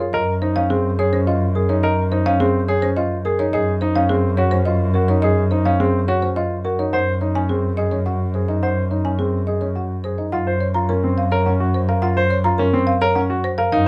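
A folk marimba with medium mallets carries a woody, rustic melody over concert grand piano arpeggios from the opening, setting a bright, propulsive minimalist classical pattern at 106 BPM in 3/4 and Gb lydian. A single bowed double bass holds Gb2 with smooth, even vibrato, up front beside the deep-bassed piano, while the harmony moves from Ebm11/Gb through Ab7sus4/Gb to Gbmaj7 at 10.3 seconds. The close, detailed sound has little reverb, and the marimba's dry, boxy character stands out in this excerpt of a longer piece.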